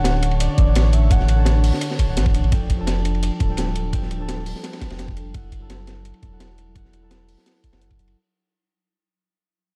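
A deep, round sine sub bass sits up front through this rolling, melancholic fragment of liquid drum and bass at 170 BPM, joined by a knocking, layered electronic kick from 0.6 s and a gritty, pitched-up sampler hi-hat over a crunchy, saturated breakbeat kit with dark cymbals and a high-tuned snare. A mellow, clean tine electric piano with delay plays chords moving from Dmaj7 to F69 to F#m7, while a very quiet, ethereal pad warbles with detuned unison voices and a noise layer. A velvety sawtooth lead with chorus, vibrato and tape echo sings a brief melody that stops at 1.8 s, all within a dark production with studio reverb and a fade-out across the whole piece.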